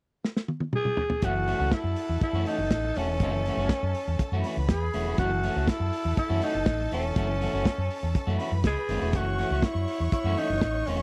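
A dry, close 1970s-style studio sound carries this driving, danceable disco groove at 122 BPM in F# dorian: a muffled soul drum kit opens with a fill at 0.2 seconds, a raspy, growling alto saxophone with tape echo takes the melody from 0.8 seconds, and at 1.2 seconds a round, dark fingered electric bass, a picked electric guitar at the edge of break-up with spring reverb, and a lush bowed string section settle onto an F#m7 chord.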